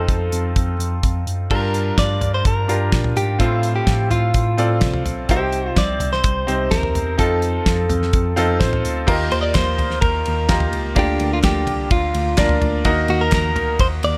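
A straight 4/4 groove at 127 BPM drives this uplifting, hopeful piano-driven pop clip, where a dry, damped 70s drum kit with a fat snare and tight kick sits up front alongside a bright grand piano with audible action noise and long sustain, a mellow tine electric piano carries the bass, a clean, compressed, direct-recorded electric guitar picks out the melody, the piano adds a fill at 8.4 s, and very quiet, hollow group handclaps join from 9.5 s to 13.4 s in a small room with light reverb.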